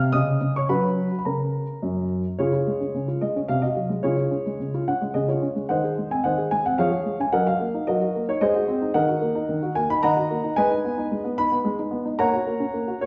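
A recital hall's wet reverb, with a 1.3-second decay, surrounds this recording, which is heard from further back in the room and has a dulled top end that stops at 8.0 kHz. Within that space, a solo baby grand piano carries a warm, open tone and still sounds up front. The music is a playful, graceful classical-period sonatina in 3/4 with a straight feel, tuned to A4 = 438 Hz, and it spans from F#2 to F6. A short opening passage moves from C#sus2 to F#, then a longer second section begins at 2.4 seconds on Db. That section passes through Ab7/C, Db/F, Ebm/Gb, D#m and G#m before settling on F#/A# near the 13.1-second mark, where this brief passage cut from a longer piece ends.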